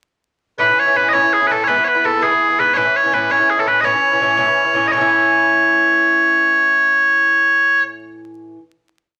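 A wet studio reverb and a layer of vinyl crackle frame this short, cheerful Celtic folk piece in a straight 6/8. Loud bagpipes sit up front from 0.6 seconds, their piercing, continuous solo tone carrying a motif-based melody built from period phrases. Beneath them, an Irish bouzouki gives a mellow yet metallic accompaniment, its double strings picked and strummed with drive through open chord shapes. The harmony moves simply from A to E and back to A, settling on a final chord at 4.9 seconds. The pipes stop at 7.8 seconds, leaving the bouzouki to ring on briefly alone.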